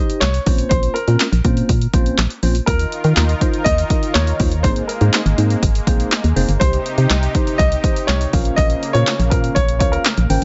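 A baby grand piano with audible action noise and tape echo carries the melody over a mellow tine electric piano run through a phaser, joined almost at once by a punchy, overdriven analog drum machine with handclaps and hi-hat and a dark, hollow organ-like FM bass with sidechain pumping, before a lush, detuned unison pad with chorus enters at 2.7 s in this confident, energetic dance-pop passage set in a digital ambience.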